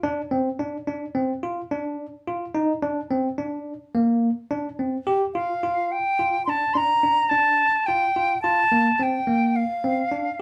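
A moderate studio reverb gives this short cut from a longer piece the feel of a band playing live in one room, with both instruments up front. It is a brooding, intricate progressive instrumental in G minor at 107 BPM, set in a straight 5/4. A bell-like tine electric piano opens alone, its clean, direct arpeggios moving between Bb3 and G4 over a rootless G7 with the third omitted. At 5.3 seconds a pure, wooden flute enters with the melody, high between F5 and C6, its close-miked tone crisp in attack and shaded with vibrato. Shortly after, at 5.6 seconds, the harmony settles onto Gm7 as the second section begins, and both parts carry on until the piece cuts off around 10.4 seconds.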